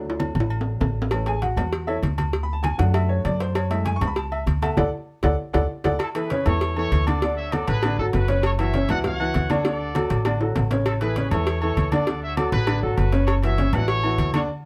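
A close, up-front sound with light reverb frames this joyful, danceable salsa excerpt, cut from a longer piece. A clear, woody upright piano, slightly detuned and open, carries the opening as a solo over the chords, while a dark, thumpy upright bass with gut strings plucks underneath and low-tuned congas ring under soft hands. Timbales and agogo bells add metal-shell shimmer from the start, with drum fills punctuating the groove, and a tight, high-tuned cowbell joins at 1.1 seconds. At 6.0 seconds, after a band accent, a punchy, vintage trumpet section with vibrato takes over the melody in a bright pop style. The harmony circles through D, A and F#m7, with an F#7 colour midway, before a final fill and band accent close the passage.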